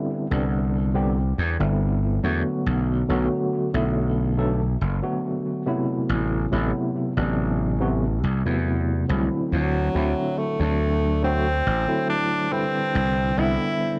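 Nostalgic and hazy, this 70 BPM vaporwave clip in A dorian sets a barky, overdriven tine electric piano with fast tremolo, lush chorus, 12-bit sampler grit and tape echo over a growly, punchy slap bass that enters at 0.3 seconds, while a clear, forceful, smooth-topped tenor saxophone with light vibrato and tape echo takes the solo melody from 9.5 seconds, the whole mix sitting in light small-room reverb with cassette-tape character as the chords drift from Cmaj9 through Bm7, Am69 and D9.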